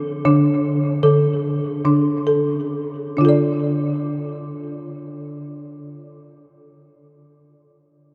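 Hypnotic and meditative, this brief excerpt of world-style tuned percussion sits in D minor, in a straight 7/8 counted at 130-160 BPM in eighths, with tuning set to A4 = 439 Hz. A folk marimba struck with soft mallets plays solo from 0.0 to 6.3 seconds, ranging from D3 to D5, its woody hardwood bars giving a round, airy tone that sits up front. Tape echo trails each note, and a vast cathedral reverb, lingering for 6.9 seconds, surrounds the instrument with an echoing sense of space. The opening passage slows down over its first 3.2 seconds on a D5 harmony, and at 3.2 seconds the music settles onto D minor for a second section. The result feels rustic and mellow, like a fragment lifted from a longer contemplative piece.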